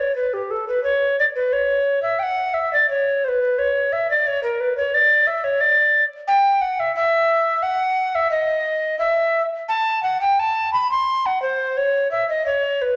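In a rubato 3/4 at 88 BPM, this 13-second fragment of a grave, flowing baroque-style fantasia unfolds for a lone tenor recorder, tuned to A4 = 443 Hz and moving between G4 and C6. The instrument sits up front with a woody, airy straight tone, its tongued notes carrying a distinct chiff. A wet recital hall reverb of 1.6 seconds surrounds the line, and a layer of vinyl crackle lends the recording an aged patina.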